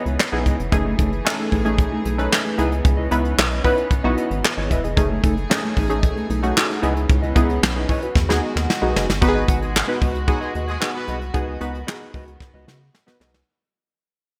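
Bright, digital early-eighties production with light reverb and a small-room ambience frames this late-night, danceable slice of boogie funk, cut from a longer piece and moving at 113 BPM in a straight 4/4. Up front, a soft brush drum kit with a punchy kick, medium-tuned snare, hi-hat and handclaps drives the groove, while a rubbery, hollow square-wave bass with a filter pluck and fast attack bounces underneath. A funky, detuned sawtooth polysynth comp with chorus, ring modulation and filter sweeps carries the harmony over C#m9 and F#m69, with a clean, fingered electric guitar riff sitting dark in the background under a subtle chorus. Floating behind them, a warm studio string section holds soft-attack, sul tasto chords from a distance. At 9.2 s the piece fades out as the harmony moves to G#m7 and a loose, clear horn section with vibrato plays a second line until 11.2 s, before a drum fill closes at 13.5 s.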